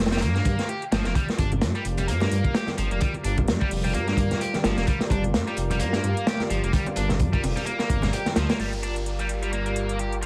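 Swung sixteenths at 129 BPM drive this gritty, swaggering breakbeat cut in G minor, which is taken from a longer piece and sits on a single Gm7 chord. A crunchy, saturated breakbeat kit with a tight kick and medium-tuned snare plays up front from the start until 8.6 seconds. A metallic, tape-toned electronic hi-hat sits in the background throughout. A dark, rumbling detuned saw bass holds the low end alongside the kit, while a tight, double-tracked distorted guitar riff carries 12-bit sampler grit, a low-pass filter and dub echo. A lush, thick unison pad enters at 1.2 seconds with chorus and sidechain pumping, and very quiet ringing congas join just after. When the kit drops out at 8.6 seconds, an electronic downlifter sweeps through the closing stretch over vinyl crackle and small-room ambience.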